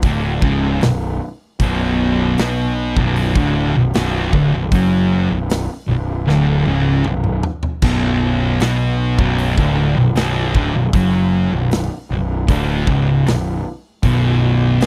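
This dry, close recording has the character of a 1970s studio session, with little reverb around the instruments. It is a hypnotic, sludgy stretch of stoner and doom metal, cut from a longer piece, moving at a slow 77 BPM in straight 4/4 in B minor, tuned to A4 = 435 Hz, and resting on a single B minor chord. Two thick fuzz guitars play the riff throughout. One sits up front with a warm, distorted tone, while the other stays in the background with a darker shade. Underneath, a picked electric bass with overdrive adds a round, fuzzed low end that also sits up front. A big acoustic rock kit, recorded in a big room, carries the beat with a punchy kick, a medium-tuned snare, hi-hat, toms and bright crash cymbals, and plays a fill from 6.3 to 7.8 seconds.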